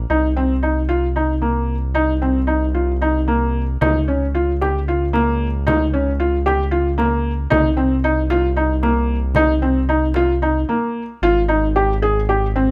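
A round, deep analog bass opens this restless, hypnotic chamber piece in 7/8 at 227 BPM, joined almost at once by felt-muted upright piano arpeggios that sit soft and intimate up front over a C phrygian harmony moving from Cm7 to Db and back. A small, bright frame drum enters in the background at 3.8 seconds and drops out at 10.4, and after a brief break the music shifts to an Abmaj7(no3) chord at 11.2 seconds before the cut ends. The close, detailed recording carries a light reverb, and the bass has a dark, evolving, detuned character.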